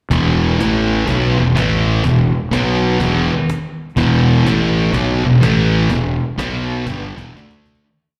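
A brooding, smoky blues rock power-trio piece with a southern rock edge, it moves at 124 BPM in a swung 4/4 in E minor, built entirely on a thick, double-tracked fuzz guitar playing a distorted power-chord riff up front, with a growly, punchy fuzz bass doubling that riff in a boogie figure. A snappy acoustic cajon struck with hard hands sits in the background with slapback echo, driving a big rock groove. The short piece, heard as a live gig through the venue's PA, fades out from 5.9 seconds and closes on a drum fill at 7.3 seconds.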